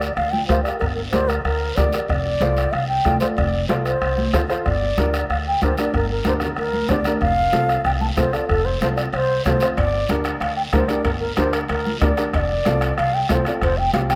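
A lightly reverberant, close-miked airy bamboo bansuri carries the melody over a dark, slightly detuned upright piano with audible action noise, woody pizzicato upright bass, a distant soft-beaten bombo, a raspy dry guiro and ringing high-tuned congas, with metal-shelled timbales joining in the background at 9.8 seconds, in this fiery, danceable G minor cumbia excerpt at 187 BPM that alternates between G minor and F.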